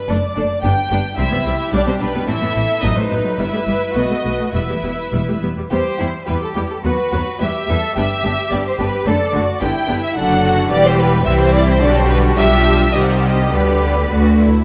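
In a brisk two-beat metre played with an elastic, rubato feel, this cheerful and graceful classical-period movement for string orchestra comes from a longer piece. The first violins carry the melody with a warm, lightly vibrated tone and a smooth top, sitting up front. The second violins trace a lush second line from a more distant place, while the violas add a clear, focused accompaniment. Beneath them, the cellos sit in the background, and the double basses anchor the bass with a rich, prominent tone. The opening phrase returns at 5.7 seconds, and the harmony turns brighter around 10.2 seconds before a shadowed chord at 12.9 seconds. A moderate scoring-stage reverb and a dark, warm production frame the ensemble.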